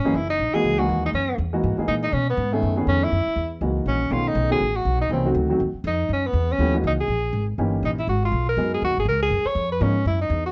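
Small-group swing and bop jazz with a sophisticated, relaxed mood, heard as a short cut from a longer piece. A vintage-toned tenor saxophone carries the melody up front with vibrato and a touch of plate reverb, while a worn, intimate baby grand piano accompanies with thirteenth and diminished chords, its action noise audible, until it stops at 9.9 seconds. A woody pizzicato upright bass sits up front in the low end, and the whole group is placed in a moderate club room with a dark, warm production.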